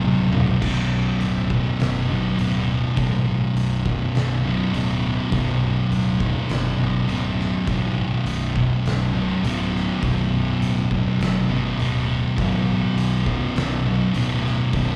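A brief drum fill kicks off this heavy, ominous stoner and doom metal excerpt at 102 BPM in B minor, the oversized low-tuned kit sounding dark and gritty with a fat snare, punchy kick, crashes, hi-hat and toms in a bright stone room. From the very first beat, two thick fuzz guitars grind out a picked riff on Bm, one distorted and up front while its twin sits very quiet beneath it, as a fingered electric bass adds a growly, overdriven low end. The whole band comes through a live club PA with a light touch of venue reverb.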